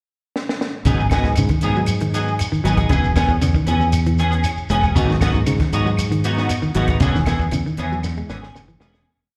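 Driving and funky, this short afrobeat piece in G# minor at 117 BPM opens with a drum fill from the compact cocktail kit at 0.4 s, whose punchy kick and high-tuned snare settle into an up-front afro groove. At 0.9 s a round, syncopated fingered bass riff joins with a hollow-body semi-hollow guitar ostinato of picked arpeggios touched with slapback echo, dark clean guitar stabs in upper chord shapes carrying ensemble chorus and slapback echo, and a grainy shekere. At 1.1 s distant woody claves follow, tapping a five-stroke time line with their own slapback echo. The parts move between G#m7 and E6 as the sound of a live gig through the venue's PA and recital hall reverb fades out from 7.0 s under a closing fill.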